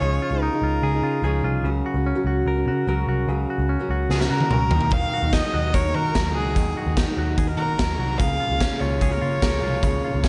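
Light, small-room reverb and a rolled-off top end frame this nostalgic, bright slice of jangly indie pop at 147 BPM, where a round, foam-muted picked bass and a fingerpicked steel-string acoustic guitar with fresh strings sit under a twangy, scooped, direct-recorded clean electric guitar playing arpeggios with slapback echo. A rich, nasal violin carries the melody with vibrato and its own slapback echo, pausing after 1.4 seconds and returning at 4.3 seconds. A gritty, saturated garage drum kit with a punchy kick and a pumping stone-room sound enters with a fill at 4.1 seconds, as the chords move from Dbadd9 through Gb and Ebm to Bbm7.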